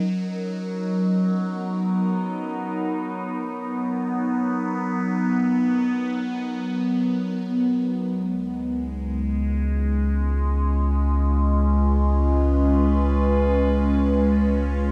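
An evolving wavetable pad carries this ambient piece, holding sustained chords that morph in a bright, up-front sine tone with a slow attack, long release, phaser and its own reverb. It moves through a Cbmaj7 chord in the opening stretch before settling onto Db7 at 7.9 s, unfolding in free time with a peaceful mood. At that same moment a deep, round sub bass enters, also up front, sustaining a low Db with a mellow sine character. A huge, wet ambient reverb with a long tail surrounds both parts, and the production leans dark and warm. The passage is cut from a longer piece and ends at 14.9 s.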